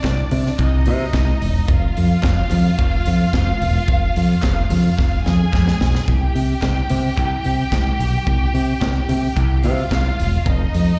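A straight 4/4 disco groove at 109 BPM in C minor drives this danceable, sultry excerpt, cut from a longer piece and captured as a live gig heard through the venue's PA with recital hall reverb and small room ambience. A tight funk drum kit sets the pulse with a high-tuned snare, tight kick and hi-hat, its dry acoustic sound touched by slapback echo, and it plays a fill from 5.0 to 6.1 seconds. Up front, a fingered electric bass carries the low end with a warm, direct and amped tone, ranging from E1 to C3. Behind it, a lush bowed string section plays a second line with focused vibrato, sounding clear yet distant and also carrying slapback echo. Very quiet ringing congas with hard hands and a crisp group handclap, set far back in a large room with its own slapback echo, fill out the percussion as the harmony moves from Cmadd9 to Fm, then C5 at 6.1 seconds and F7(no3) at 10.5 seconds.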